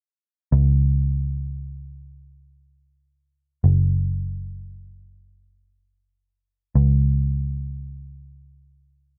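A vintage muted picked electric bass, dark, round and foam-muted with an amped, up-front tone, plays alone in free time from 0.5 to 9.2 seconds in this dry, dreamy and blissful dream pop excerpt, moving between Gb1 and Db2 with a tuning of A4 = 441 Hz.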